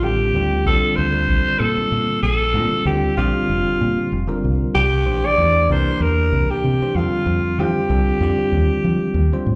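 Electric jazz fusion at 95 BPM in 4/4, with a light 16th-note swing in B-flat major, this short cut from a longer performance feels soaring and slick. A growling, raspy alto saxophone carries the solo melody between F4 and D5, its soft attack and slapback echo giving the line a gritty, jazz-flavoured edge until it stops at 9.5 seconds. Beneath it, a bell-like tine electric piano supplies bright, clean accompaniment from D3 to C5, also touched with slapback echo and sitting a little lower in the mix. A fingered electric bass, foam-muted and amped, stays up front from F1 to F3, playing through to 9.6 seconds. The harmony moves through Bbmaj9, Gm11/Bb, C9 and F9, all heard in the small-room ambience of a live club gig coming through the venue's PA.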